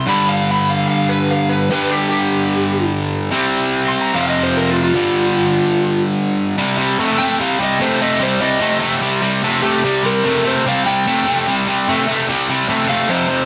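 A lightly reverberant rock excerpt at 147 BPM in C harmonic minor sets a smoky, brooding mood, with a bright, double-tracked, up-front cranked stack guitar driving an overdriven riff beneath a dark overdriven slide guitar whose fingered melody, ringing with slapback echo, takes a solo from 0.0 to 6.6 seconds over chords moving from G to C, F and back.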